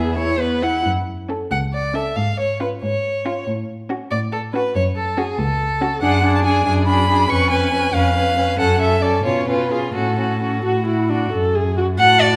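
Set in a moderate recital-hall reverb, this graceful, lively passage cut from a longer classical-period string quartet movement in a rubato 6/8 features a focused first violin with a smooth top carrying the melody up front, a rich, even second violin on the second line beside it, a close, warm viola adding expressive accompaniment with a soft attack and portamento, and a dark, woody cello supplying the bass from a more distant place, all four bowed by single players with vibrato throughout the 12.4 seconds.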